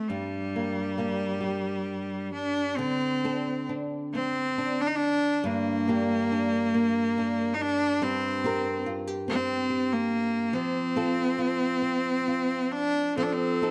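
Haunting and mournful, this Celtic slow air in a rubato 3/4 sets a biting, bright-toned bowed cello with light vibrato up front over a woody, fingerpicked flamenco guitar on old strings, moving from G minor through D5, C5/G and F under light reverb, before a breathy, chiff-edged bass recorder slips in at 13.2 seconds just as this fragment of a longer piece cuts off on F7.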